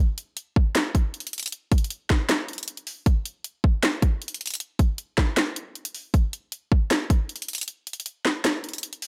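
A trap drum kit enters at 0.2 s with handclaps, hi-hat, kick drum and snare drum, driving this dark, hard-hitting hip hop excerpt at 156 BPM in 4/4 with a half-time feel. The electronic kit sits up front and overdriven, its hard-clipped kick, sharp snare and bright hats set in a light reverb with a digital ambience. A break arrives at 7.7 s and runs to the cut at 9.1 s.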